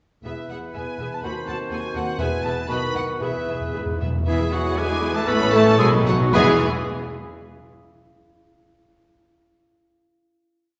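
Cheerful and graceful, this short, complete classical-period movement for symphony orchestra moves quickly in 2/4 and E major with a rubato feel, slowing down from 3.8 s into a coda and a final chord. Smooth, vibrato-rich violins carry the melody, doubled in unison by an airy flute ensemble and at the octave by a distant clarinet, a dark French horn section and very quiet cellos. Meanwhile a second violin section and lush violas rock through two-note figures and sustained chords over soft-attacked double basses. A light-vibrato oboe and mellow bassoon add chords in the rhythm of the tune, and calf-headed timpani enter at 2.2 s with single strokes on bass notes and rolls into louder sections, set in a reverberant concert hall.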